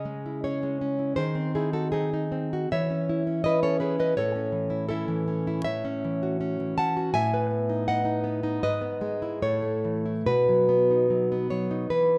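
Nostalgic yet sunny, this romantic piece for solo classical guitar unfolds in C# minor at a rubato pace of 70-84 BPM in 2/4 time. A fingerpicked nylon-string guitar carries everything on its own, sitting up front with a dark, acoustic tone across a range from G#2 to A5. The harmony moves from C#m through G#7/D# and C#m/E before turning toward A, F#m7/A and B7/A, then passes through E/G# and A to settle on B at 10.3 seconds. A moderate recital hall reverb gives the guitar a sense of space, with a decay of 1.4 seconds. Cut from a longer work, the passage lasts about 12.2 seconds.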